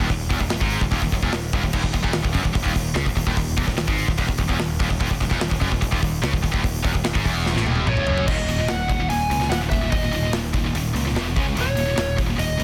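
Heavy and aggressive, this straight-time heavy metal passage, cut from a longer piece, is driven by two distorted, high-gain electric guitars playing a picked riff, one set further back, over a growly, direct electric bass and an up-front acoustic rock kit with bright cymbals, hi-hat, toms, a medium-tuned snare and a punchy kick. A drum fill at 7.5 seconds leads into a new section, and a warm, distorted lead guitar carries a high melody from 7.9 seconds while the harmony moves from a minor chord to stark power chords, with a brief shift around 11.1 seconds. The mix is dense and heavily limited, with a small room ambience.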